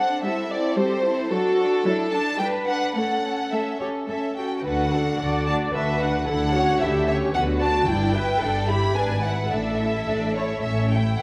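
Set in a moderate scoring-stage reverb with a faint mains hum, this short cut from a lively, graceful classical-period movement for string orchestra in D major moves at 104-113 BPM in a rubato 3/4, with an up-front, expressive violin section carrying the melody in a lush, soft-attacked vibrato tone, a distant, even second violin line and rich, smooth violas filling in the accompaniment, cellos sliding with portamento on the bass, and woody double basses joining beneath them at 4.7 s.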